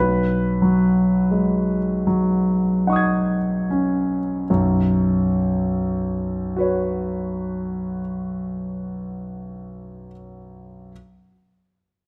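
The rhythm flows in 6/8 with free rubato, moving at a very slow 23-29 BPM counted in dotted quarters and slowing down through the first 4.5 seconds. This is impressionist classical solo piano in B major, with a dreamy, hazy mood, and it is cut from a longer piece. A warm concert grand carries everything from 0.0 to 10.9 seconds, ranging from a deep bass B1 up to G#6, and its tone sounds natural and up front. The opening section rests on a B6/9 chord, and at 4.5 seconds a new section begins on Bsus2. Close, detailed microphones capture the instrument, while a wet recital hall reverb lets each chord bloom for about 1.6 seconds.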